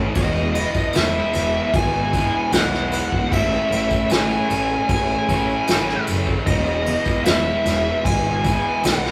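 A rough rehearsal-room recording with tube saturation and a moderate stone-room reverb frames this blissful, dreamy shoegaze and dream pop fragment at 76 BPM in E major, where a thick fuzz guitar riff and a crunchy overdriven guitar riff in the background churn over a growling, overdriven fingered bass, a soft brush kit with a punchy kick sits up front from 0.1 s, a dark, distorted bluesy lead guitar carries the melody from 0.2 s, a vintage, warbling string-machine viola pad holds sustained chords with ensemble chorus behind it, and a very quiet, jingly tambourine joins at 0.4 s as the harmony moves from Emaj7 to Amaj7 and back.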